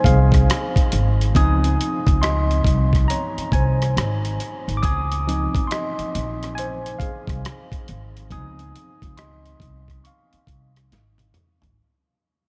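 A worn, slightly out-of-tune tine electric piano opens this short R&B and neo-soul excerpt, lightly overdriven and played through built-in speakers as it takes a solo over a Dbmaj9 chord at a slow 69 BPM with a swung sixteenth-note feel. A dusty, sampler-style drum kit sits up front alongside it, compressed and gritty with a thumpy kick, a medium-tuned snare, hi-hat, rim clicks and toms, carrying a tape-warm character. An upright bass joins at 0.1 seconds, played pizzicato with a woody, acoustic tone from steel strings, holding the low end between Ab1 and Db2. The whole mix is soaked in a moderate cathedral reverb, giving the smooth, soulful mood a dreamy haze, and the passage fades out across its full length. A drum fill arrives at 10.9 seconds before the excerpt is cut off at 11.8 seconds.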